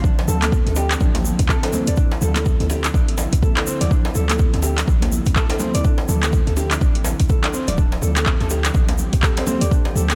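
A steady pulse at 124 BPM in 4/4 drives this hypnotic afro house groove in D minor, its sixteenths carrying a gentle 60% swing over a single sustained Dm9 chord, cut from a longer piece. An up-front electronic kick with a deep tone anchors the beat, joined at 0.4 seconds by an electronic afro-pop drum kit with handclaps and metallic hi-hats. A grainy egg shaker fills in the percussion, while a djembe with rattling metal and saturated compression and bright, high-tuned congas set in a distant large room sit in the background. Underneath, a boomy 808-style bass with a sine core, a noise layer and tube saturation decays after each fast attack, breathing with sidechain pumping. A dark, full-bodied nylon-string guitar plays thumb-plucked arpeggios through tape echo, also breathing with sidechain pumping. Behind it all sits a mellow, ethereal pad of detuned sawtooth and triangle unison voices, slow to swell in and long to release, softened by ensemble chorus and built-in reverb and pulsing with the same sidechain motion.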